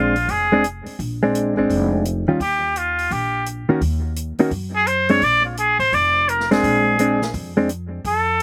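A muted trumpet, hollow-body electric guitar and upright bass start together in this relaxed, warm small-group swing excerpt, with an acoustic drum kit joining at 0.2 seconds. The straight-muted trumpet carries the melody up front, its nasal, bright tone colored by vibrato. The guitar is also up front, with a dark, clean, compressed sound and a slapback echo, fingering chords that move from Bb9 to Ebadd9, Ebm and back to Bb9 before it stops at 7.7 seconds. The pizzicato bass gives a woody, thumpy low end, and the softly placed drums keep a light swing on hi-hat, a medium-tuned snare and a boomy kick. The recording is dry and open-air, with little reverb around the players.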